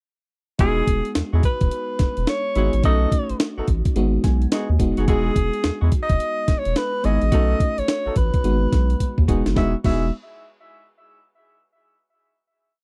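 R&B in a new jack swing style, this short, complete piece is bouncy and flirty, riding a hard-swung sixteenth-note feel in 4/4. A gritty, compressed breakbeat kit, sampler-style and pitched up, sits up front with a thumpy kick, high-tuned snare, hi-hat and crash cymbal, while a round, deep analog bass plays a swung synth-funk line dotted with muted ghost notes. Over this, a breathy alto saxophone carries the melody up front in jazz style, with subtone, vibrato and scooped notes shaping short, song-like motifs. A warbling, vintage FM electric piano pushes rootless chords through a progression built around Emaj9, B7 and G#m7, stepping out for a short fill at 4.0 seconds, and a mellow horn section adds tight, syncopated jazz stabs in octaves with light vibrato and a smooth top. The recording is dry and close, in a 1970s studio manner, and after a drum fill at 9.0 seconds the piece settles on a final chord at 9.6 seconds.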